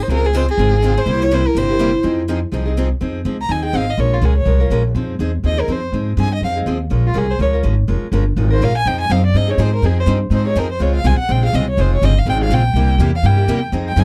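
Acoustic string swing in the jazz manouche style at a brisk, virtuosic 246 BPM in F minor, with a bright, fresh-stringed steel-string guitar sounding a short second line until 2.0 s beneath an up-front, bowed violin with vibrato, portamento and a soft attack that carries the melody from the start and opens its expressive solo at 3.0 s, supported by a picked archtop guitar's accompaniment, a boxy parlour steel-string guitar in the background that drops out and returns at 8.9 s, and a thumpy, woody gut-string upright bass played pizzicato, all captured in a dry, close 1970s-style studio sound.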